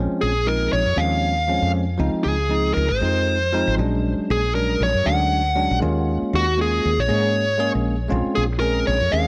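Electric jazz fusion at 118 BPM in 4/4, with a light sixteenth-note swing, this short section from a longer piece feels soaring and funky. A woody fretless electric bass sits up front from the very start, its growly, round and punchy tone anchoring the low end. A bell-like tine electric piano supplies clean, bright accompaniment alongside it. At 0.2 seconds a dark, smooth lead guitar enters with an overdriven, picked melody that carries the passage to its close at 9.3 seconds. The harmony moves through Bbm9, Dbmaj9, Bb7alt and Eb9sus4 before returning to Bbm9, tuned slightly sharp to A4 = 444 Hz and set in a light reverb.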